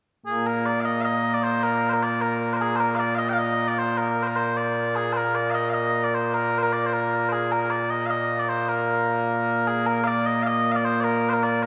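Scottish traditional pipe music in 6/8, this short cut from a longer piece moves at a straight 102 beats per minute counted in dotted quarters, centered on B-flat mixolydian. A solo set of small bagpipes carries the whole tune from 0.3 s to 11.7 s, its tone mellow and sweet, sounding continuously from a low Bb2 up to G5. The pipes sit up front, giving the ceremonial, proud mood a close, personal presence. Around them, a cathedral-like reverb with a long 4.7-second tail fills a church or concert hall, so each phrase blooms and hangs in the air. The melody states its opening strain and then begins it again at 9.9 s before the recording breaks off.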